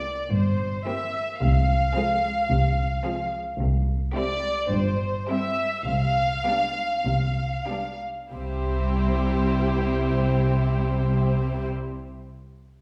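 Quick classical-period orchestral movement in C major, urgent and restless at 92-110 BPM, where muted violins carry a veiled, vibrato-laden melody up front over a second violin line and close viola accompaniment, joined at 0.3 seconds by dark cello and double bass sections, all con sordino and heard from further back in a wet recital hall as the tempo slows between 2.5 and 8.3 seconds before settling on a C major chord in this fragment of a longer piece.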